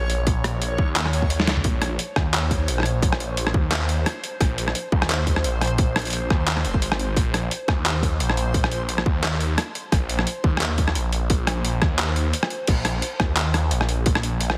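A heavily compressed, radio-like mix with light reverb frames this spacious, cinematic half-time drum and bass cut in Bb minor at 174 BPM, where a swirling, thick phased saw bass sustains over a Bbmadd9 harmony beneath a dreamy reversed granular texture in the background, gritty pitched-down sampler drums with a drum fill at 1.4 seconds, and a hard-clipped, overdriven electronic kick that drops out from 12.0 to 12.7 seconds before the chord falls away and the texture stops at 12.7 seconds.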